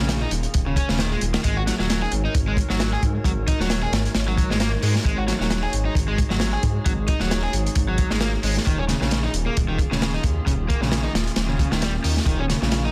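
A crunchy, gritty acoustic breakbeat kit sits up front in this funky, energetic breakbeat excerpt, its tight kick, medium-tuned snare and hi-hat sounding saturated with a rolled-off top at 133 BPM in 4/4, with a 55% swing on the sixteenths. Underneath, a dark, detuned saw bass rumbles deep and saturated, its beating tone sustaining with a fast attack. An overdriven semi-hollow electric guitar plays a warm, picked riff through a digital delay. In the background, a warbling, nostalgic lo-fi pad built from detuned square and triangle tones with a sub octave holds sustained chords with a slow attack, chorus, built-in reverb and sidechain pumping. The harmony moves from D#9sus4 to G#9sus4 at 1.4 seconds and returns to D#9sus4 at 8.7 seconds. The studio ambience and dense, heavily limited modern master keep the sound tight and forceful.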